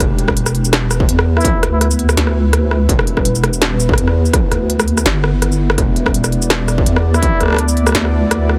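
A heavy, dark half-time drum and bass drop in E minor at 166 BPM opens at once: a deep, wobbling bass sits up front with a sine-and-triangle roundness and chorus, under a moody ambient pad of detuned, wave-folded sawtooth chords that carry sampler grit, built-in reverb and a sidechain pump. Driving the groove are a distorted electronic kick and an industrial kit up front, with a clanging snare, crisp hi-hats, rim clicks and shaker, all tape-tinged and re-recorded in a small room, swung lightly on the sixteenths. At 1.4 seconds a plunger-muted trumpet breathes a brief jazz-style phrase in its middle register, its wah-wah, vibrato and smooth top roughened by 12-bit grit and trailed by dub echo. It returns for another short phrase at 7.1 seconds, and the kick drops out at 7.3 seconds while pad, bass and kit carry on. The whole mix has a heavily compressed, radio-like density, and this clip is cut from a longer piece.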